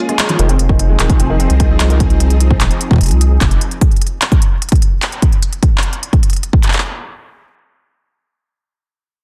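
A round, deep analog bass sits up front in this melancholic, cerebral IDM fragment at 149 BPM in F minor, alongside a heavy electronic kick and a crisp-hatted industrial drum kit of handclaps and rim clicks through dub echo, while a silky string machine holds phased, chorused Fm7 chords and a felt-muted upright piano traces intimate, echoed arpeggios through a low-pass filter until 2.0 s, the strings and bass falling away at 3.6 s as the drums carry on under light reverb and digital ambience in a dense, heavily limited master.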